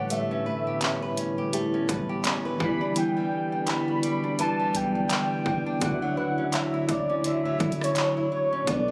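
Contemporary R&B at 84 BPM with a longing, sensual mood, cut from a longer piece, where a velvety, detuned synth lead with chorus and digital delay carries the melody over up-front fingerpicked flamenco guitar arpeggios, a mellow tine electric piano, a shimmering pulse-width pad, a soft round pluck, a deep 808-style bass and a trap kit with a hard-clipped kick, metallic hats, handclaps and rim clicks entering at 0.1 seconds, moving through A9, Em9 and Dmaj9 in a phone recording of a room with club ambience and light reverb.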